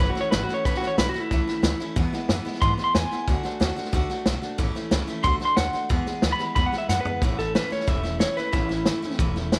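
An electric guitar through a small old amp carries the melody up front, its slightly broken-up, compressed, lo-fi tone wrapped in spring reverb and tape echo. This upbeat, retro rockabilly cut moves at a brisk 183 BPM in 4/4 with a straight feel, in A major, circling through A, E and D chords. A bright, full-bodied jumbo steel-string acoustic guitar is picked underneath. A woody pizzicato upright bass anchors the low end, while an up-front vintage drum kit sounds natural, with a punchy kick, a medium-tuned snare and a rolled-off top across hi-hat, snare and toms. A drum fill at 6.9 s leads into a clean electric guitar solo at 7.2 s, and the electric guitar drops out at 9.2 s, all set in a small room.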